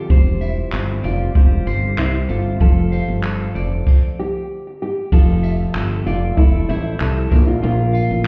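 A straight, easy-going 96 BPM groove in 4/4 comes from an up-front jazz brush kit with a boomy kick, shadowy cymbals, handclaps and tambourine, under a growly, round fretless electric bass, in this heartfelt acoustic pop fragment in F major. A full-bodied, fingerpicked steel-string acoustic guitar with audible finger squeak carries the accompaniment, while a thumb-plucked nylon-string guitar with fresh strings plays the melody through delay, and a slightly broken-up electric guitar picks arpeggios in the background with plate reverb and delay from 0.4 seconds. A very quiet, glassy FM pad sustains ethereal chords moving from C/E to F6, Fmaj7 and Bb, and the whole recording sounds muffled, as if heard through a wall in a stone room.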